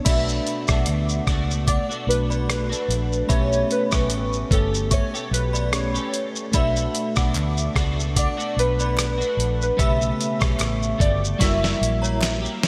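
Bathed in a lush hall reverb with a big arena sound, this hazy, wistful indie and bedroom-pop excerpt at 74 BPM in B minor sets a warbling, lo-fi synth-keys melody treated with chorus, slapback echo and delay over reedy electric piano, a bright, clean twelve-string electric guitar, a chiming FM synth second line with tremolo, a dark, round foam-muted fingered bass and a gritty, up-front sampler-style drum kit with thumpy kick and fat snare, while very quiet, hollow group handclaps join at 7.4 s before a drum fill at 11.4 s.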